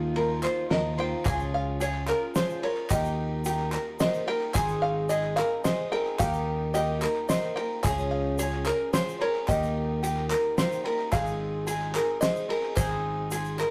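In a straight 3/4 at 109 BPM, this hopeful indie folk piece in Ab major builds around a twangy, plunky open-back banjo melody over a shimmering, woody twelve-string acoustic guitar, light tenor ukulele arpeggios and a punchy, up-front fingered electric bass, with a very quiet fingerpicked steel-string guitar dropping out at 2.9 s, a cloth-damped, thuddy drum kit with a fat snare and dark cymbals, hollow group handclaps and a grainy egg shaker that joins at 1.3 s, inside a rough rehearsal-room recording washed in wet studio reverb.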